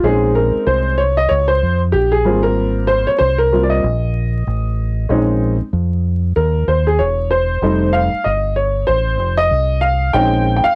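A cool, nocturnal jazz-hop groove opens at once with an upright piano and a deep dub electric bass sounding together from 0.0 seconds. The piano is woody and slightly detuned, with a smooth, vintage character and long sustain, and it sits up front while carrying the chords and taking the featured role through to 10.8 seconds. Beneath it, the fingered bass is dark, round and punchy, with a direct, amped tone that also sits close and forward. The tune moves at 95 BPM in 4/4 with a relaxed swing on the sixteenths, and the harmony in Bb dorian moves from Bbm11 to Abmaj13, back to Bbm11, then F9 before settling on Bbm11 again. A light reverb, cassette grit and a bed of vinyl crackle give this short cut from a longer piece a homemade, late-night feel.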